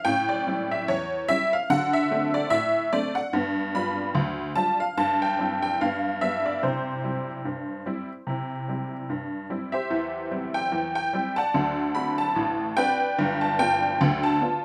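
Ragtime piano in a playful, lively mood, heard here as a short cut from a longer piece in a bouncing 2/4 with a swung sixteenth-note feel. A lone honky-tonk upright piano carries the whole performance, its detuned, jangly tone sitting up front and spanning a broad range from deep bass notes to bright upper treble. The harmony moves through a chain of dominant sevenths, A7 to D7 to G7, before settling onto C through a G-bass voicing. A new passage begins at 9.9 seconds on C over E, then turns again through D7 and G7 before the cut ends at 14.6 seconds. A moderate club-like reverb gives the vintage instrument a short, natural sense of space.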